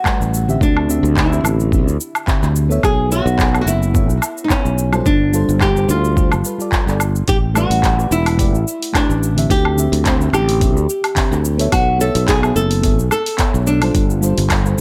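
Sunset chillout with a relaxed, lightly swung feel, where a fingerpicked flamenco guitar carries the melody through tape echo over a soft, round FM electric piano treated with chorus, phaser and its own tape echo, while a growly, up-front fretless bass, a gritty, thumpy electronic kick and a dark-hatted deep house kit of cabasa, handclaps, hi-hat and woodblock circle through suspended ninth chords in a light digital ambience.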